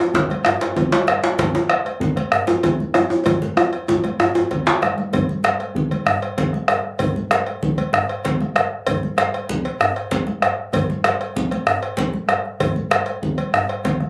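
West African traditional drum ensemble music in 12/8, powerful and earthy, with a metallic, close and dry cowbell over a round, up-front bombo, thick-skinned congas struck with hard hands, and a tight, cracking djembe carrying metal rattles. A second, medium-tuned djembe with its own rattles and a vintage, band-limited tone sits up front until a drum fill from 3.3 seconds leads into the next section, and it drops out at 4.8 seconds. Cut from a longer performance, the phone recording captures a small room's moderate reverb and compression, giving the congas and the tight djembe a saturated edge.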